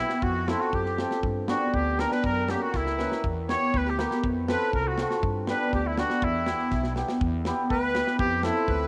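A cassette home recording with light reverb and small-room ambience captures a soulful, bittersweet klezmer fragment in 2/4 at 120 BPM that gradually speeds up, with a vintage, classical-style trumpet carrying the melody up front over a reedy, slowly beating accordion second line in the background, a shimmering, ringing hammered cimbalom, a woody, thumpy pizzicato upright bass on gut strings, and a dry, tight funk drum kit of kick and snare that adds fills at 2.7 and 6.7 seconds as the chords move through F, G, F# and Em.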